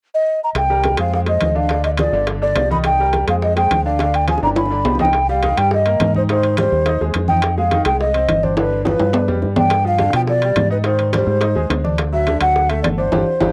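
Salsa at a driving 210 BPM in C minor, this passionate fragment of a longer piece opens with a breathy, hollow silver flute carrying the melody up front, colored by cassette grit and tape echo. A dark, round fingered electric bass enters at 0.5 seconds, and congas, bongos and ringing metal-shelled timbales join just after. The congas sit low-tuned and thick-skinned in the background beside tight, high-tuned bongos, while the dry timbales cut through more clearly. A bright, worn grand piano with deep low notes supplies accompaniment through the same tape haze, moving through minor, diminished and dominant changes such as Fm7, Ddim and G7 before settling into Cm7 and Abmaj7 in the second section from 5.1 seconds. Drum fills mark the turns, and the band lands a final accent at 13.1 seconds, all in light reverb with the intimate feel of a home cassette recording.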